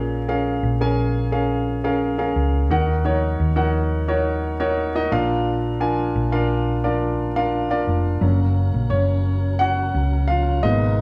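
A smooth, vintage, up-front grand piano with deep bass accompanies this bittersweet, dramatic pop passage, cut from a longer piece, and takes a solo from 8.2 seconds as the harmony moves to Gb. Beneath it, a dark, round hollow-body electric bass holds the low end from the start, while a mellow tonewheel organ enters at 8.2 seconds with clean sustained chords, chorus vibrato, key click and a fast rotary speaker. The band plays live together in a stone room filled with wet reverb.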